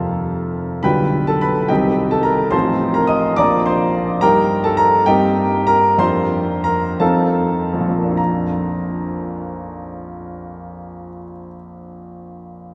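Romantic classical character piece for solo piano, hopeful and lyrical in mood, flowing in a lilting 6/8 with free, rubato timing. A grand piano carries everything alone, its tone clear and open with long sustain, placed up front and ranging from deep bass notes to bright upper registers. The instrument sits in a wet cathedral reverb whose lengthy tail lets each chord bloom and linger in the space. The harmony moves through a gentle chain of chords, and the pace slows noticeably from 3.4 to 8.2 seconds as the opening phrase settles onto its home chord. A new section begins at 8.2 seconds, and the passage, cut from a longer piece, closes at 12.7 seconds.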